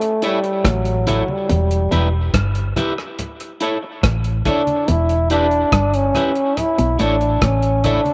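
A breathy, whispered trombone carries the melody up front over a cloth-damped, thuddy drum kit with hi-hat, kick and rim click, joined by a slightly broken-up, twangy electric guitar, a clean background guitar riff, low-tuned congas and a dark, round, foam-muted fingered bass in this laid-back, meditative roots reggae excerpt that sways between A and Em under dub and tape echoes and a moderate spring reverb.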